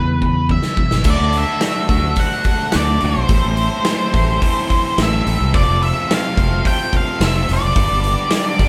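A dark, fuzzy octave lead guitar carries the melody over a compressed, double-tracked distorted guitar riff and a growly fingered electric bass in this gritty, driving classic rock passage at 107 BPM in a straight 4/4, and a drum fill from a big, natural-sounding acoustic kit joins a moment after the start. After an opening E5, from 1.1 seconds the band moves through D, Am and F to G, with the punchy kick, medium-tuned snare and bright cymbals sitting up front alongside the bass and lead. The sound is of a band playing live together in one room with moderate studio reverb, and the clip is cut from a longer piece.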